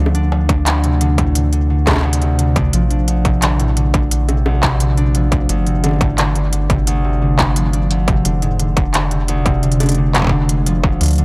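A straight 4/4 pulse at 87 BPM drives this cerebral, eerie IDM fragment, with a distorted, tape-warm electronic kick entering at 0.5 seconds to join an overdriven organic electronic kit of bongos, handclaps and smooth hi-hats that sounds re-recorded in a small room. A rubbery, hollow square bass sits dark and up front under ringing concert harp arpeggios, which carry 12-bit sampler grit and digital delay. Under light reverb, the harmony moves through Dm7, Bbadd9 and G7sus4 before settling on Fm.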